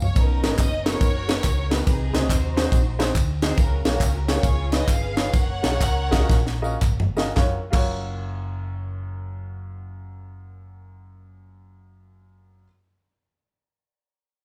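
Uptempo gospel in F# major with a hopeful, soulful swing, where a warm, expressive bowed string section carries the melody until 6.8 s over dark, woody upright piano and a round, punchy hollow-body bass, while an up-front funk drum kit with a high-tuned snare, backed by background tambourine and group handclaps, opens and closes its run with fills as the tempo slows from 3.6 to 7.4 s, leaving piano and bass to continue to 12.7 s in a live room with moderate large reverb.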